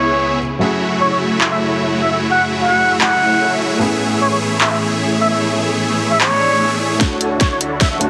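Future bass in A major at 150 BPM with a half-time feel, bright and euphoric, cut from a longer piece. A plunger-muted trumpet carries the melody in a jazz style, breathy and wah-wah, with vibrato and scooped notes, sitting over a soft, intimate felt-muted upright piano whose action noise is audible and whose notes die quickly. A studio string section holds smooth, focused bowed chords beneath, while lush, detuned supersaw chords play a bright riff up front with subtle chorus, and sidechain pumping runs through these four parts. At 1.4 seconds a layered, overdriven dubstep kit enters with handclaps, hi-hat and a huge snare, and a very quiet electronic swell and riser creeps in at 6.4 seconds. From 7.0 seconds the harmony moves to Dmaj7 for a build-up with a drum fill, a filter sweep on the supersaw and a hard-clipped, overdriven kick punching up front. The whole sits in a huge ambient reverb and a dense, heavily limited modern master, with the progression running C#m7, F#m7 and Amaj7 before that final chord.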